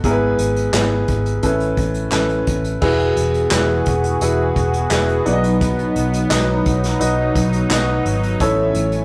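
A clear, woody upright piano opens this uplifting, hopeful piano-driven pop excerpt at 86 BPM, backed by a dark, round, foam-muted picked electric bass and an acoustic drum kit with a punchy kick, medium-tuned snare, hi-hat, handclaps and crash played with bundle sticks, moving from E/G# to Aadd9. At 2.8 seconds an airy, detuned sawtooth pad with a soft attack and chorus enters with sustained chords as the harmony shifts to Eadd9, then B and A. The whole take has the rough character of a rehearsal-room recording, with a moderate stone room reverb and warm saturation.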